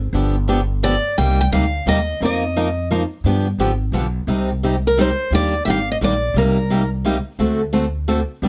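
A bright, fresh-strung steel-string guitar carries a fiery, virtuosic melody from 0.8 to 6.9 seconds, its picked notes up front with audible finger squeak, in this excerpt of acoustic string swing in C minor at 174 BPM in a swung 3/4. Beneath it, a second picked steel-string guitar supplies warm accompaniment, while a woody, thumpy pizzicato upright bass on gut strings anchors the low end. Light reverb surrounds the close, concert-style sound as the harmony moves from G7 and Cm7 through Ebmaj7 to a closing D7.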